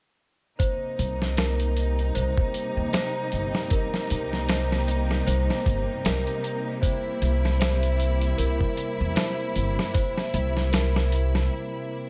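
A brooding, melancholic trip hop passage, cut from a longer piece, opens at 0.6 seconds with a dark, smooth string section holding sustained chords under delicate, bell-like celesta arpeggios that ring through a low-pass filter and delay. A dusty, sampler-style drum kit enters alongside them, gritty and compressed, with a thumpy kick, a medium-tuned snare and hi-hat sitting up front in studio reverb over a lightly swung groove. At 1.0 seconds an upright bass joins, woody and dark with gut-string pizzicato, prominent in the mix. A tense, string-like drone with a slow attack and vibrato emerges in the background from 1.7 seconds, its sawtooth grain and ring-modulated noise layer bathed in its own reverb. The harmony moves from a minor seventh to a dominant seventh chord, and a brief break arrives at 11.5 seconds as drums, bass and drone stop, leaving the strings and celesta to finish in a small, lightly reverberant room.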